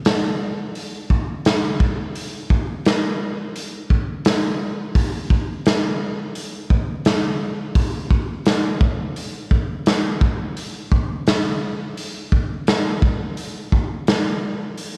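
Rock excerpt at 86 BPM in a straight 4/4, hypnotic and mysterious, carried entirely by a raw garage drum kit that plays from 0.1 to 14.9 seconds. The acoustic kit of hi-hat, punchy kick and medium-tuned snare sits up front with a dark, gritty, saturated tone and a rolled-off top. It is set in a bright stone room with light reverb.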